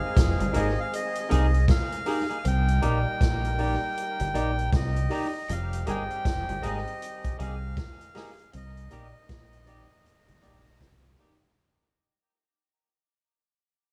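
Over a swung sixteenth-note lilt, this longing, bittersweet lovers rock reggae fragment fades throughout as a punchy vintage drum kit with gated reverb and a round, deep dub fingered bass sit up front beneath a reedy, breathy melodica carrying the melody through tape echo, a barky tine electric piano with overdrive and phaser, a mellow, distant horn section on a second line, a slightly broken-up riff from an electric guitar through a small old amp with subtle chorus, and twangy electric guitar stabs with dub echo, set in small-room studio ambience.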